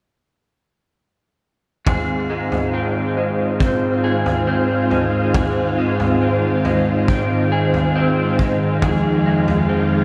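A huge, reverb-soaked wash frames this ethereal, blissful dream pop excerpt at 69 BPM in Ab major, where a warbling, vintage organ-string ensemble holds sustained chords up front, a slightly broken-up electric guitar through a small old amp picks lo-fi arpeggios with chorus and delay, and a boomy, gritty garage kit of kick drum and toms plays from 1.9 to 9.7 seconds as the harmony moves from Ab6 to Fm7.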